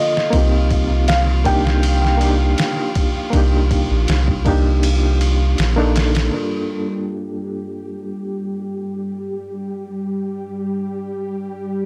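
A deep, round sub bass sits up front in this smoky, cinematic trip hop excerpt alongside a muffled, overdriven sampler-style drum kit whose thumpy kick drops out at 4.8 seconds before bass and drums stop at 6.3 seconds, while a reedy, slightly out-of-tune electric piano with fast tremolo and tape echo, vintage sawtooth string-machine cellos under ensemble chorus, and a dark, felt-muted upright piano carrying a brief melody with audible action noise fill out a dry, gritty recording that brings a filter sweep to the electric piano from 6.3 seconds.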